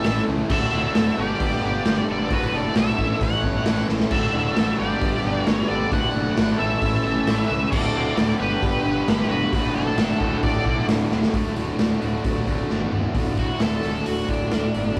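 This rough rehearsal-room recording sits in a small room with moderate reverb, giving a swaggering, sunny classic rock cut from a longer piece at 133 BPM in 4/4 with a straight feel, in D major. Up front, the acoustic drum kit has a punchy kick, a medium-tuned snare, toms, hi-hat and crash, with a smooth, rolled-off top and several fills, while a growly, fingered fuzz bass holds the low end. Three picked, overdriven rhythm guitars play the riff: a crunchy one kept very quiet, another sitting in the background, and a double-tracked raw garage guitar that drops out at 11.3 seconds. A dark, octave-fuzz lead guitar carries the melody, joined by a biting second lead line in the background until 10.9 seconds, then takes a solo from 13.2 seconds. Beneath it all, a very quiet, mellow string machine cello patch with a sawtooth edge, slow attack and ensemble chorus sustains chords that move through A, D, G and D/F#.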